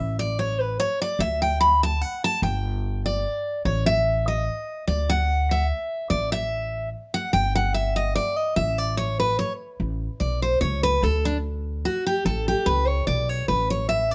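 A picked steel-string acoustic guitar and a pizzicato upright bass start together, both up front, launching a joyful, driving bluegrass waltz in 3/4 at 146 BPM with a swung eighth-note feel in A mixolydian. The guitar carries the lead as a solo across the whole 14.1-second stretch, its full-bodied dreadnought tone ringing between D4 and B5. Beneath it, the gut-string bass sits low between G1 and D2, its sound woody, dark and thumpy. The harmony moves through A5, D69, G5 and an Emmaj7/G before settling on Aadd9, then the phrase begins again at 9.8 s, passing through D5 and landing once more on Aadd9. Close, detailed microphones and a light reverb keep the pair intimate and clear in this short cut from a longer piece.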